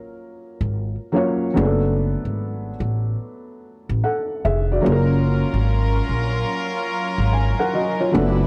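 Mellow and cosy, this lo-fi hip hop fragment drifts at 73 BPM with a lazy 16th-note swing in F# major. A dark, boxy felt-muted upright piano with short sustain and cassette-tape colour sits up front from the start, joined at 0.6 s by a woody, thumpy pizzicato upright bass with tube saturation, as the harmony moves from F#maj7 to D6/F# and back. At 4.8 s a soft-attack string section adds floating, pure sul tasto chords, while the recording stays dry and gritty under light studio reverb.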